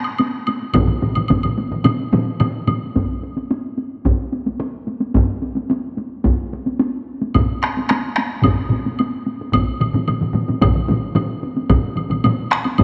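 A driving, powerful Japanese traditional taiko ensemble piece at 110 BPM in a straight 4/4, cut from a longer work. A woody, close woodblock opens at 0.0 s beside heavy-stick taiko up front. Further layers join: a hard-stick taiko up front, a second heavy-stick taiko up front, and a heavy-stick taiko set in the background. The woodblock and hard-stick taiko drop out at 2.8 s and return at 7.3 s, when the ensemble thickens again, all set in a wet echo-chamber reverb.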